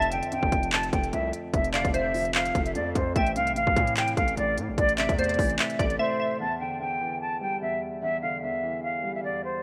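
An airy, expressive jazz flute with vibrato and a soft attack carries the melody up front through this melancholic, eerie half-time trap excerpt at 148 BPM in E phrygian, set over a dark, mellow grand piano with audible action noise and chords moving from F6 to Am to Em7. A glassy, detuned wavetable pluck with chorus and tape echo adds a warbling second line, while a distorted, heavy 808-style bass and a trap kit with a hard-clipped kick, crisp hats and handclaps drive the first section until the drums and bass drop out at 6.0 seconds. The flute and piano carry on alone from 6.4 seconds in a lush hall reverb with a rough home-demo feel.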